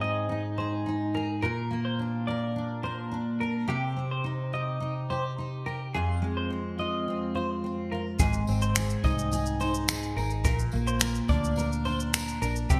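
Wistful and reflective, this acoustic pop piece moves at 106 BPM in a straight 4/4, cycling through Ab, Bb, Cm and Fm. A full-bodied, fingerpicked steel-string acoustic guitar sits up front and double-tracked, its jumbo body and audible finger squeaks carrying the accompaniment, while a clean, compressed electric guitar picks arpeggios high above it, bathed in lush chorus. At 8.2 seconds the second section begins: a dark, round, foam-muted electric bass enters low, alongside an airy, polished brush kit with a boomy kick, finger snaps and shaker, treated with gated reverb. A jingly tambourine joins at the same moment, distant and in the background as if heard from a large room. Moderate plate reverb and small room ambience frame the bright, 1980s-style digital production of this short passage cut from a longer piece.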